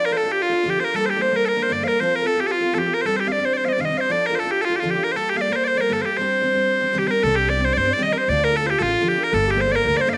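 Driving and wild, this Celtic folk cut moves at a brisk 228 BPM in 4/4 with a swung eighth-note feel, drawn from a longer piece. Loud, piercing bagpipes carry the melody up front from the start, their continuous tone touched by a slapback echo. Behind them a reedy baroque flute plays a second line with a pure, woody voice, vibrato and tongued notes, also carrying slapback echo. A picked steel-string acoustic guitar supplies full-bodied accompaniment through chords such as Dm, Gmadd9, F and Cmadd9. At 7.2 seconds a thumpy pizzicato upright bass enters, and the whole sits in a moderate plate reverb.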